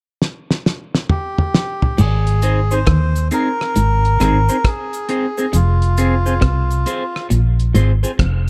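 This laid-back, uplifting roots reggae excerpt in Ab major opens at 0.2 s with a cloth-damped, thuddy drum fill, and a reedy, breathy melodica with tube saturation and tape echo takes the melody at 1.1 s. At 2.0 s the groove settles into a slow 68 BPM swung feel as a round, foam-muted fingered bass sits up front with the fat snare and tight kick. Around them are a twangy, slightly broken-up guitar riff with harmonic tremolo, a picked clean guitar colored by phaser and tape echo, and a compressed cabasa, all over an Ab to Fm change in a dark production with light studio reverb.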